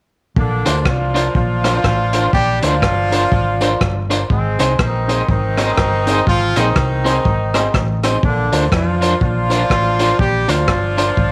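Up front, a loose horn section with light vibrato and octave doubling carries the melody over a round, dark hollow-body bass and a crunchy, gritty breakbeat kit with a punchy kick, rim clicks and hi-hat in this upbeat, bouncy swung ska excerpt, joined at 0.7 s by a slightly broken-up electric guitar with tremolo, a woody, slightly detuned upright piano playing stabs in the background, and a very quiet, jingly tambourine, set in light studio reverb.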